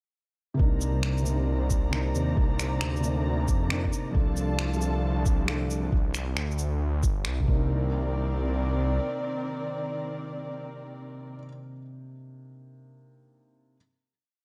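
A muffled, thumpy, pitched-down kick sits up front in this melancholic, rainy future garage piece at 135 BPM in 4/4, laying down a two-step pulse with a swung 16th-note feel in C dorian. Beside it, a saturated, detuned sawtooth bass in unison plays long, gliding, menacing notes shaped by a filter swell, while electronic shakers and finger snaps, re-recorded in a large room, add a skittering shuffled beat. A soft, felt-muted upright piano with audible action noise plays spread, held chords with syncopated pushes, coloured by vintage 12-bit sampler grit and tape echo. Alongside it, a veiled con sordino chamber string section holds dark bowed chords with vibrato, and the piano, strings and bass all pump with the sidechain. A faint, breathy wind-like noise layer holds a high note for a few seconds early on. The harmony moves from Cm9 to Dm over C and back, the groove runs from 0.6 s to 7.7 s before a final hit, and the piano rings on alone until 13.8 s under light reverb.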